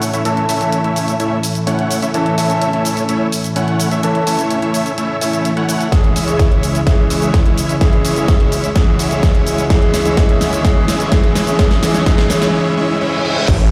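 Heard through a big sound system in a bare stone room with a lush hall reverb, this triumphant, anthemic festival progressive house build-up at 127 BPM sets a warm, natural concert grand piano and a dense, up-front supersaw riff, both pumping and dub-echoed, the supersaw moving under a filter sweep, over a bright background pad and a big-room kit with a huge snare, crash, hi-hat and shaker, while a punchy electronic kick drives in at 5.9 s, a very quiet riser and reverse cymbal arrive at 9.9 s, and a saturated, detuned saw bass lands on A at 13.5 s as the chords move from A through C#m to D.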